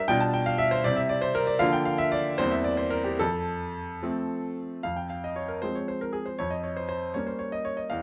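The rhythm moves in a lilting 6/8 at about 72-80 dotted-quarter beats per minute, pulled gently by rubato, giving this classical-period sonatina fragment a graceful, playful sway. A solo baby grand piano carries the whole passage, sounding clear, intimate and natural, placed up front with its action noise audible beneath the notes. The harmony opens in F major, passing through G7/B, C, Bb/D and C7/E before settling on F at 3.2 seconds. At 4.8 seconds the phrase returns in F minor and closes on Gm7b5/F. The piano spans from E2 to A5, and a light reverb lends the short cut from a longer piece a soft sense of room.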